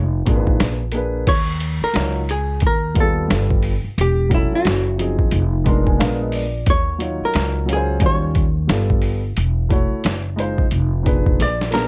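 A miked, amplified archtop guitar and a woody pizzicato upright bass open this cool, mellow jazz-hop excerpt, joined at 0.3 seconds by a dark concert grand piano and a gritty boom bap sampler-style drum kit, all at an unhurried 89 BPM in 4/4 with a 16th-note swing. The clean, hollow-body guitar carries the picked melody between E4 and D5 up front, dressed in plate reverb, while the thumpy steel-strung bass sits low and close. The piano supplies deep, natural accompaniment through a jazzy progression of chords such as Fm, Bb7b9, Ebm9 and G9, stepping forward with a fill at 5.3 seconds. The compressed, pitched-down kit pairs a thumpy kick with a medium-tuned snare, hi-hat and crash, sounding as if re-recorded in a small room, and closes with a drum fill at 11.4 seconds. Over the whole mix, light reverb and the wobble of a worn cassette tape add a warbling pitch drift that gives the track its lo-fi haze.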